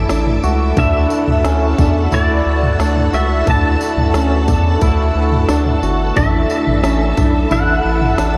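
In a straight 4/4 feel, this dreamy, ethereal dream pop excerpt rests on an organic electronic kit with a tight kick, woody snare, tambourine and toms, and a round, dark, up-front analog bass, while a twangy clean electric guitar picks chorused, delayed arpeggios, a slightly broken-up lo-fi guitar through a small old amp is picked in the background with tremolo and chorus, and a shimmering, warbling string machine holds violin chords, before a pedal steel guitar enters at 0.8 s with a fingerpicked, slide-and-volume-swell melody, all bathed in a huge ambient reverb.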